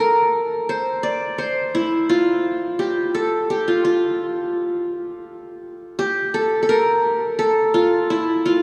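A bright-edged, plectrum-plucked qanun rings up front in a vast, cathedral-like reverb that trails for several seconds, with the small-room ambience of a church or concert hall around it. This short festive, stately piece of Arabic music moves at 85 BPM in an unhurried 3/4 in F maqam ajam, the solo qanun's triple strings sounding acoustic and warm between E4 and D5. Cut from a longer piece, it shifts into a new section at 6.0 seconds before breaking off at 8.6 seconds.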